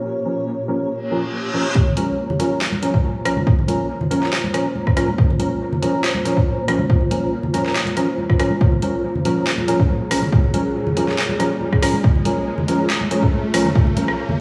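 Deep dubstep at 140 BPM in a half-time feel with a light swing, this cavernous, meditative excerpt sits on a Bb minor chord in Bb dorian. A cloudy, detuned granular pad holds sustained chords from the start, slow to bloom and blurred by its own reverb, while a hollow, dark organ stab with a fast, decaying attack sits up front through chorus and dub echo. A reverse cymbal rises in the background from 1.1 seconds, and at 1.8 seconds the punchy, overdriven electronic kick arrives as a long build-up begins, with a riser and a filter sweep on the pad running to the end. Bright, thin-skinned congas with dub echo and a layered deep house kit of high-passed hi-hats, rim clicks and a fat, overdriven snare join almost at once. The whole mix rings through moderate spring reverb and the stony ambience of a bare room played through a big sound system.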